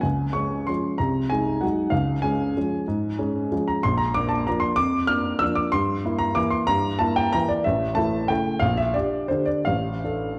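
A woody, slightly detuned upright piano plays alone and up front, its action noise clearly audible, in this wistful, bittersweet classical waltz fragment cut from a longer piece. The 3/4 pulse moves with a flexible rubato between 156 and 203 BPM, and the harmony drifts from Db through Bb and A before pausing on an unresolved Asus4 near 9.7 seconds. A moderate stage reverb and dark, warm production give the intimate playing a soft sense of space.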